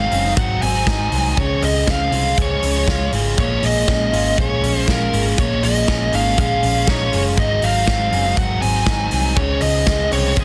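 A straight 4/4 pulse at 120 BPM drives this wistful, restless stretch of jangly indie pop in Bb minor, with a big rock drum kit entering at 0.1 seconds, its punchy kick and medium-tuned snare up front in a big room, beneath a dark, round, foam-muted picked bass. A biting, overdriven lead guitar carries the melody up front over a cranked stack guitar's bright accompaniment and twangy, slightly broken-up arpeggios from a guitar through a small old amp, whose pitch drifts with a warbly wobble. The chords move from Ab7 through Dbmaj7 and Bbm7 and back, all set in moderate studio reverb within a dense, heavily limited modern master.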